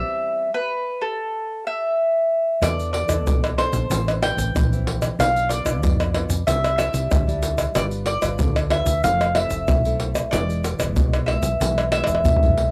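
A home cassette recording with light reverb gives this nostalgic, lively fragment of samba and choro a soft, lived-in haze. At 94 BPM in A minor, an up-front mandolin carries the melody with a mellow, round, double-string tone. Behind it, a fingerpicked nylon-string guitar sits in the background, full-bodied with fresh strings and audible finger squeak, and both parts carry cassette tape color and plate reverb. A dark, punchy fretless electric bass with a woody, hollow-body character holds the low end. The opening bars form a stop on Am7, and at 2.6 seconds the egg shaker, surdo, pandeiro and tamborim arrive up front, compressed and saturated, with a tight surdo and hard hands. The harmony then moves from E7sus4 through Am, Bdim, Cadd9, G7 and Fmaj7 to E, and a drum fill at 11.9 seconds closes the cut.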